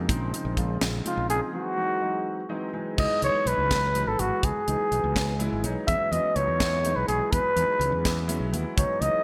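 A bucket-muted trumpet carries the melody from 1.1 seconds, sitting up front with a dark, veiled, raspy tone, gritty growls, scooped notes and vibrato in a jazz solo style. This short cut from a longer electric jazz fusion piece feels funky and slick, moving at 83 BPM in 6/8 with a straight feel in C# minor. A crisp acoustic fusion drum kit, airy and polished with a high-tuned snare, punchy kick, hi-hat and crash cymbal, sits up front with gated reverb. A bright, direct fretless electric bass anchors the low end, while a warm concert grand piano with deep bass, open long sustain and subtle chorus plays the accompaniment and drops in recurring fills. A break arrives at 1.5 seconds, and the harmony moves through Bbm11, Ab7b13, C#m11 and E69. The sound has a lush hall reverb over a small room ambience, with bright 1980s-style digital production.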